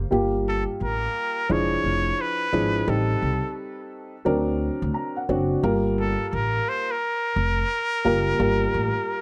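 A swung 16th-note hip hop groove at 87 BPM in 4/4 sets a nocturnal, cool mood in G minor, with a dark, mellow upright piano comping through Gm9, E7b9, Am7b5 and D7b13 before settling on Gm7. A woody, thumpy pizzicato upright bass with gut strings anchors the low end, while a close-miked trumpet with straight mute enters at 0.5 seconds with a nasal, breathy, whispered jazz melody carrying gentle vibrato and soft attacks. The piano adds a brief fill between 4.6 and 5.6 seconds, and light reverb wraps this short, intimate excerpt in a dark, warm production.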